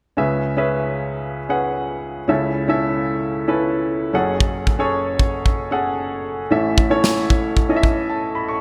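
Piano-driven pop with a bittersweet, earnest mood and a straight 4/4 feel, cut from a longer piece, built on a C#m7, A/C#, F#madd9 and A progression. A clear, open baby grand piano sits up front and carries the accompaniment across a broad register, playing alone until a polished acoustic studio drum kit enters at 4.4 seconds with a punchy kick and medium-tuned snare under gated reverb, then drops out at 8.0 seconds. The bright 1980s-style digital production bathes the piece in a lush hall reverb.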